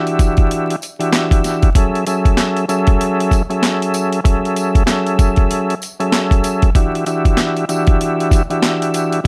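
Boom-bap hip-hop at 96 BPM with a swung sixteenth feel, reflective and gritty, cut from a longer piece and dusted with vinyl crackle and light reverb. A smooth, clean tonewheel organ sits up front with chorus vibrato and a cassette-tape tint, moving from Em9 to F#m9 and back to Em9 at 6.8 seconds. A compressed sampler-style kit drives it with a thumpy kick, high-tuned snare, hi-hat and handclaps, while a jingly, close and dry tambourine stays in the background.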